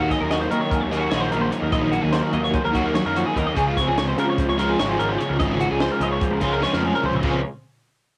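Playful and bright, this short math rock and midwest emo cut from a longer piece moves in a straight 9/8 at 294 BPM in Db major, shifting from Ebm7 to Dbmaj7 at 3.6 seconds under a light reverb and the character of a home cassette recording. Up front, a double-tracked, overdriven semi-hollow guitar carries the riff, while two clean, compressed twelve-string electric guitars fill in: one warm and treated with tremolo for the accompaniment, the other twangy with a vibrato effect, sitting in the background with arpeggios. A growly fuzz picked electric bass anchors the low end, and a dry compact cocktail drum kit with dark cymbals, a high-tuned snare and punchy kick plays from 0.1 seconds, landing a drum fill at 6.6 seconds.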